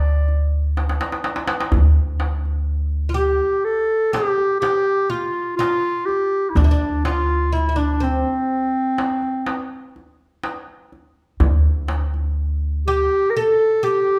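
This Turkish makam ensemble piece in makam ussak on D is melancholic and full of longing, moving at 124 BPM in eighths through a straight 10/8. A warm, smooth-topped clarinet carries the classical-style solo melody up front. A bright, plectrum-plucked fretless oud with double strings traces a second line in the same register, while a dark, woody pizzicato upright bass plays a low D until 13.1 seconds. A crisp, deep metal-shell darbuka, compressed and saturated, joins at 0.3 seconds and plays a fill from 0.8 to 1.7 seconds, with the whole band heard live together in a large studio's lush reverb.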